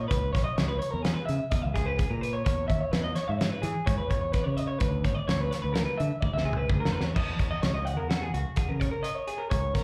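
A twangy, slightly broken-up electric guitar through a small old amp rings out in this bright, playful stretch of math rock and midwest emo, playing picked arpeggios up front with a slapback echo and a lo-fi edge. Beneath it, a growling fingered electric bass adds overdriven grit, sounding direct and amped and sitting just as close. A loose indie drum kit enters at 0.1 seconds, its punchy kick, fat snare, dark cymbals, hi-hat and toms heard mid-forward in a small room. The music moves in a straight 5/4 through C#m7, Emaj7 and Bm, and a drum fill at 6.2 seconds carries it into a new section on D#m7 at 7.2 seconds. It has the sound of a live gig heard through the venue's PA, with club reverb around the band, and it is cut from a longer piece.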